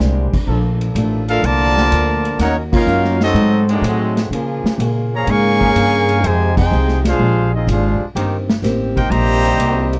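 Joyful and swinging, this big band swing passage opens with a clear baby grand piano that sounds only until 0.5 s, over a boxy, picked archtop guitar in the background, a woody, growly upright bass up front and a vintage drum kit with dark cymbals, a punchy kick and a pumping small-room sound. A loose, bright trombone section then holds sustained chords in the background, and at 1.3 s a warm trumpet section with light vibrato takes the melody up front while a smooth-topped trombone section plays a second line. Ensemble accents punctuate the jazzy chord changes in the dry sound.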